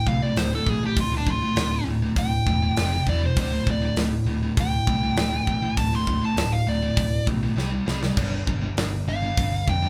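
Heavy metal at 100 BPM in D minor, aggressive and epic, this short excerpt features a nasal, parked-wah lead guitar soloing throughout over a bright, scooped high-gain riff guitar, a growly, punchy overdriven bass and an up-front acoustic drum kit with a tight kick, medium-tuned snare, hi-hat and crash. The chords move from D minor through power chords on F, E and D, then C at 7.6 seconds, where the drums play a fill leading to G at 8.2 seconds. The band sounds as if playing live in one room, with moderate studio reverb.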